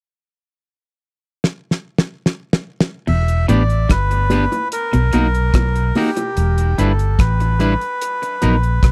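Dub reggae at 73 BPM in a meditative, hypnotic mood, cut from a longer piece, where a damped 70s drum kit with a fat snare and tight kick opens with a fill at 1.4 seconds before a round, foam-muted electric bass arrives up front at 3.1 seconds over Em7 and Bmaj7, joined by a reedy, breathy melodica melody with dub echo, a twangy, slightly broken-up guitar riff with lush chorus tucked in the background, a bright, clean picked guitar accompaniment, and soft-handed, low-tuned bongos, all captured in a dry, close 1970s-style studio sound.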